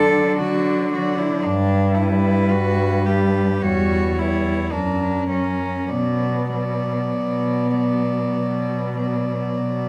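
Unhurried and rubato in 4/4 at roughly 48-57 BPM, this melancholic, elegiac passage for four bowed cellos in B minor moves from D through G and C#dim/E to F# before settling on Bm at 5.9 seconds. A floating, pure-toned top cello carries the melody high in its range, while a clear, slightly nasal second cello sits close beneath it, and a dark, intimate accompanying cello adds vibrato and an airy bow. Underneath, a woody bass cello sounds distant yet up front. All four play sul tasto in light reverb, the upper three with soft attacks.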